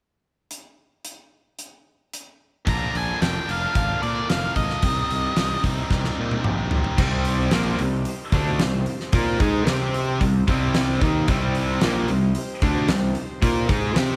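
Gritty and swaggering, this classic rock excerpt in C minor drives at 112 BPM in a straight 4/4. A huge arena drum kit with a fat snare and punchy kick opens alone, up front in a big room, before a bright, tight distorted guitar riff and fuzzy, overdriven fingered bass arrive at 2.7 seconds over Bb moving to Cm. A dark octave-fuzz lead with slapback echo carries a brief melody, a drum fill leads to 7.0 seconds, where a compressed overdriven guitar and a shimmering, boxy twelve-string acoustic with finger squeak join in the background, all under light reverb.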